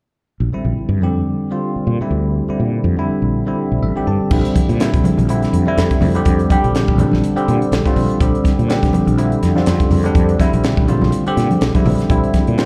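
Electric jazz fusion with a funky, slick mood at 123 BPM in 4/4, swung on the sixteenths in B-flat lydian, this excerpt from a longer piece opens with a dark, round fretless bass and a bell-like tine electric piano coloured by phaser, the keys adding a fill just before 4.3 seconds. At that point a crisp fusion kit joins up front with a high-tuned snare and punchy kick, and low-tuned, ringing congas follow at 4.6 seconds in the background, as the harmony moves from Bbadd9(#11) to Bbadd9. The whole is heard as a live gig through the venue's PA, with light club reverb and small room ambience.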